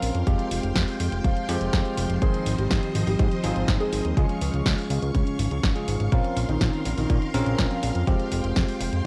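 Italo disco in F minor at 123 BPM, this danceable, nostalgic fragment of a longer piece sets a dark, intimate grand piano melody with tape echo and audible action noise over lush string-machine chords thickened by ensemble chorus and bell-like electric piano stabs. A fat, saturated analog bass and a punchy, up-front electronic kick, which enters at 0.3 seconds, join a house kit with a punchy snare and bright hats, with the drums sitting in studio reverb. The chords move from Fmadd9 through Ab, Db and Bbmadd9, and the whole recording has a dry, gritty cassette character.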